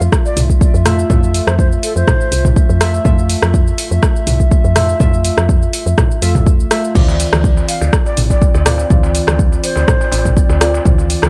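A lightly swung 123 BPM afro house groove in 4/4 sets a warm, spiritual mood: an up-front, tape-warm electronic kick drives a deep house kit of cabasa, hi-hat, rim click, toms and crash cymbal, while a crisp metal-shelled darbuka joins from a distance at 6.9 s. A woody, round FM bass, soft mellow chord stabs with chorus and dub echo, and a dark, nasal, detuned analog pad with chorus all pump against the kick as the harmony moves from Fmaj7 to Dm7. Above them a breathy bamboo bansuri with vibrato and digital delay plays two short phrases, the second arriving at 7.7 s, in this excerpt from a longer track.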